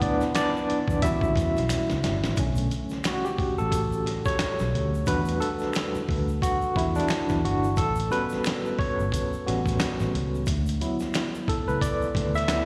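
Heard through a venue's PA with recital-hall reverb, this introspective, late-night neo-soul R&B excerpt at 89 BPM in E dorian, with swung sixteenths, features a barky, lightly overdriven tine electric piano with tremolo and slapback echo soloing up front over a dark, foam-muted fingered bass, a gritty sampler-style drum kit with a thumpy kick and fat snare that plays a fill at 1.7 seconds, and an egg shaker with finger snaps in the background, as the chords move from D69 through Bm9, Em11 and A13.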